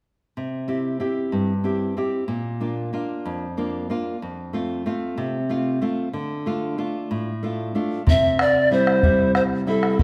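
A fingerpicked nylon-string guitar opens at 0.4 seconds, its classical, acoustic tone sitting up front with audible finger squeak as it plays through C, Bb, F and Dm in a slow 6/8 at 62 BPM, counted in dotted quarters. This Andean folk piece, cut from a longer performance, carries a festive yet wistful mood, and the guitar alone holds the opening section. At 8.1 seconds the music moves to a new section on a C chord, and a bright, polished pan flute takes up the melody. The close-miked flute has a woody, airy character, with a crisp attack, chiff and vibrato. A round bombo enters at the same moment, its acoustic thump carrying a small-room sound. Around these parts, a moderate recital-hall reverb lends the ensemble the resonance of a church or concert hall until the excerpt ends at 10.0 seconds.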